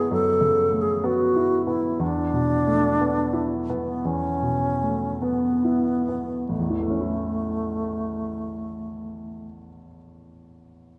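A dark production bathed in the wet reverb of a scoring stage frames this dreamy, pastoral classical duo in the impressionist style, cut from a longer piece in A major and 4/4 with a rubato feel between 44 and 67 BPM that slows over the opening 6.5 seconds. Up front, an airy alto flute carries the melody with expressive vibrato and a soft attack, while a clear, polished baby grand piano supplies accompaniment over F#m11 and E7sus4 harmonies. The music settles onto A at 6.5 seconds, and after the flute stops at 9.5 seconds the piano plays alone until 11.0 seconds.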